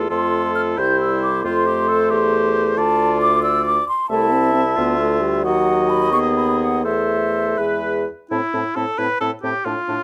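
An oboe with light vibrato, a bright clarinet, a distant, roomy French horn and an up-front bassoon bass open this quick, restless classical-period movement for wind quintet in A minor, its 6/8 lilt at 89 BPM shaped by rubato. From 0.1 s a pure, hollow concert flute with vibrato and a soft attack carries the melody high above, while the close-miked oboe sings a second line and the harmony presses through F, D minor and a diminished chord toward E before settling on A minor at 8.3 s. Light reverb and close, detailed microphones keep the urgent texture clear, and the fragment, cut from a longer piece, stops shortly after a new section begins at 8.3 s.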